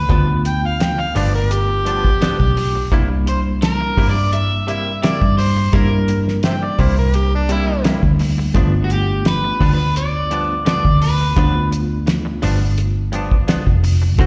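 A straight-eighth soul blues groove at 85 BPM in 4/4 rides on a cloth-damped, thuddy drum kit with a fat snare and tight kick, and a round, foam-muted fingered bass up front, moving between G7 and C7 in G mixolydian with a gritty, swaggering mood. An overdriven semi-hollow guitar carries the melody until 11.7 seconds, while an amplified, overdriven harmonica with scooped notes, tongue slaps and light vibrato plays a jazz-style second line from 0.5 to 7.9 seconds, both with slapback echo. A twangy, compressed, direct-recorded clean guitar adds stabs with subtle chorus, and a bright tine electric piano comps beneath, all captured in this short cut from a live gig heard through the venue's PA in a reverberant recital hall.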